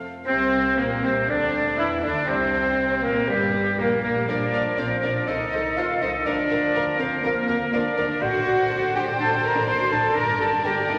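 Bathed in a wet church reverb, this dramatic, restless excerpt from a quick classical-period symphonic movement unfolds with a rubato feel, as a very quiet, intimate violin section carries the melody while a second violin line, viola, cello and double bass sections, all bowed softly over the fingerboard with vibrato (light in every section but the viola), supply a close chamber-string bed. At 0.3 s the winds join: a clear, vintage-toned oboe sits up front on a second line, alongside a background clarinet and a pure, hollow silver flute. A dark, smooth bassoon adds accompaniment, and a mellow French horn section holds very quiet sustained chords underneath.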